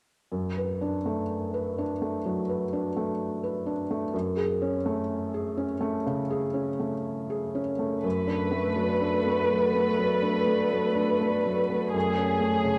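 A felt-muted upright piano, mellow and intimate with audible action noise, opens this melancholic, longing neoclassical excerpt in a loose rubato; at 8.0 s a veiled, con sordino violin section takes up the melody with vibrato, joined by a dark single cello on a quiet second line and a warbling, detuned tape-like pad with chorus holding sustained chords in the background, the whole sitting in moderate spring reverb with the worn character of a home cassette recording and its lossy compression artefacts.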